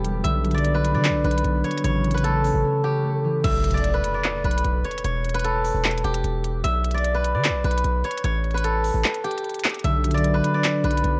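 Worn, warbling cassette tape with pitch drift and little reverb colors this brooding, melancholic trap excerpt at 150 BPM in a half-time feel in B minor, where a silvery steel-string zither, played with fingerpicks, carries the melody up front through tape echo over a ringing, fingerpicked concert harp accompaniment that drops out at 6.4 s and returns at 9.8 s, a punchy, saturated 808-style bass with a noise layer, a crisp electronic trap kit of hi-hats, handclaps and crash whose kick falls silent at 9.0 s, and an electronic impact in the background at 3.4 s.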